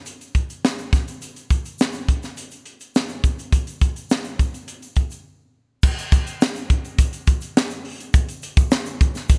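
Light reverb and bright 1980s-style digital production give this short pop excerpt a glossy, upbeat sheen. At a straight 104 BPM in 4/4, a crisp fusion drum kit carries the music from 0.1 to 9.4 s, sitting up front with an airy, polished studio-room sound. Its high-tuned snare and punchy kick are joined by hi-hat and crash cymbal. An egg shaker plays through the same span far in the background, its grainy acoustic tone set back in a large, distant room. A brief break from 5.3 to 5.8 s marks the move into a new section that runs to the end.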